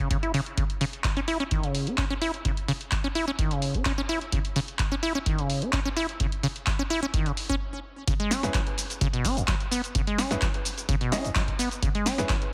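A squelchy, resonant sawtooth acid bass riff sits up front, pumping against an overdriven deep kick and a dry, punchy analog drum machine of handclaps, hi-hat, shaker and snare in this hypnotic, gritty acid house cut, which halts briefly at 7.6 seconds before the drop brings bright, worn baby grand piano stabs with digital delay from 8.4 seconds, all pressed into a heavily compressed radio sound with light digital ambience.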